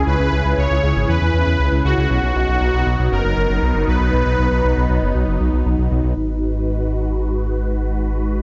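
Nocturnal and cinematic, this short synthwave passage, cut from a longer piece, moves in a straight four-four pulse. A soft, smooth supersaw carries the melody in a middle register, its detuned unison sawtooth voices shaded by phaser and delay until it drops out at 5.6 seconds. Beneath it, a phased analog pad holds sustained chords with a slow attack and long release, its airy, swirling tone thickened by chorus and a noise layer. A dark detuned saw bass sits deep and rumbling at the bottom, its beating low end blending sawtooth, square and sine colors. The harmony moves from C#m to B, then arrives at G#m7 at 6.2 seconds as pad and bass close the excerpt together under light reverb and a dense, heavily limited modern master.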